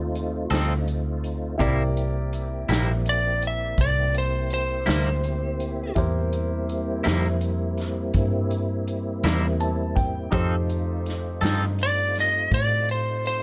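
The sound is dry and close, with little reverb, in this gritty, swaggering slow blues cut from a longer piece, moving at 55 beats per minute in 12/8 in C mixolydian and tuned slightly under standard pitch. A lightly driven lead guitar carries the melody up front, its picked, compressed tone slightly broken-up, while a vintage muted fingered electric bass sits equally forward, dark, round and punchy from its foam mute. A big-band drum kit enters at 0.2 seconds, playing hi-hat, boomy kick and medium-tuned snare in a big acoustic room, and a semi-hollow electric guitar joins at 0.5 seconds with clean, hollow-body accompaniment shimmering under harmonic tremolo. Further back, a tonewheel organ holds sustained chords through a slow rotary speaker and chorus vibrato, and a clear concert grand piano adds open, deep-bottomed accompaniment, including a fill from 9.2 to 10.3 seconds. The harmony moves from F7 to C7 and returns to F7 at 10.3 seconds.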